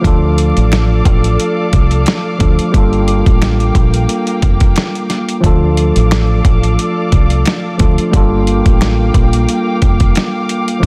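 Boom-bap hip-hop at 89 BPM with a light 16th-note swing and a dark, gritty mood, cut from a longer piece and cycling between Dm and Gm7. Dusty sampler-style drums sit up front with a thumpy kick and medium-tuned snare, while a deep, foam-muted fingered electric bass stays round and punchy beneath a worn, slightly out-of-tune tine electric piano that carries cassette-tape wear and light overdrive. Smooth, lush bowed strings hold sustained chords with vibrato further back, and a very quiet, dry finger snap enters at 0.7 seconds, all inside a dense, heavily limited master dusted with vinyl crackle.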